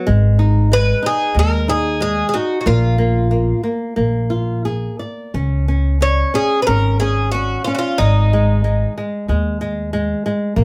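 Heard from further back in a moderately reverberant studio, this short cut from a longer fado-style ballad has a passionate, longing mood and a loose, rubato feel in four. A bright, fingerpicked flamenco guitar with fresh strings carries the accompaniment throughout, and a woody, dark pizzicato upright bass on steel strings sits low beneath it from the very start. At 0.7 seconds an Irish bouzouki takes the melody, its picked double strings giving a mellow yet metallic tone that is set in a plate reverb. The bouzouki falls away at 8.9 seconds, leaving guitar and bass to close. All three instruments sit up front, with the harmony moving through Ab5, Bb5, Bb7 and Db5 before returning to Ab5, tuned to A4 = 437 Hz.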